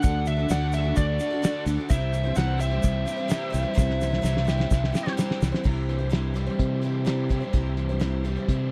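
A biting, overdriven lead guitar carries the melody over a full band from the first beat of this short folk rock and heartland rock cut, set at a steady 128 BPM in a straight 4/4 with a hopeful feel. Beneath it, a picked twelve-string acoustic guitar shimmers with octave-doubled strings and a hint of finger squeak, while a double-tracked, hollow-body semi-hollow guitar plays a riff in the background. A round, punchy fingered electric bass sits up front alongside a cloth-damped, thuddy drum kit with a fat snare, tight kick and dark cymbals. A reedy tonewheel organ holds sustained chords through a slow rotary speaker and chorus vibrato, its key click audible, and a grainy tube shaker adds a faint pulse. The harmony moves from D to C, a drum fill rolls in at 3.8 seconds, and the lead drops out at 5.1 seconds before a new section opens at 5.6 seconds. The whole recording has a dry, close 1970s studio sound with little reverb.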